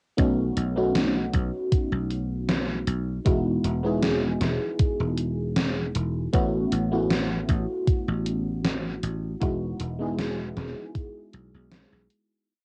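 Vaporwave at 78 BPM in E major with a slight swing, woozy and dreamy: a mellow, warbling FM electric piano with analog chorus and tape echo holds rootless chords with syncopated pushes over B9, Emaj9 and A69, while a growly, foam-muted thumbed slap bass plays a syncopated riff, an overdriven, thumpy kick and a gated-reverb 80s drum machine snare and closed hat lay down a slowed pop beat, all captured as a home cassette recording in a lightly reverberant small room that fades out from 8.4 seconds to the end at 12.5 seconds.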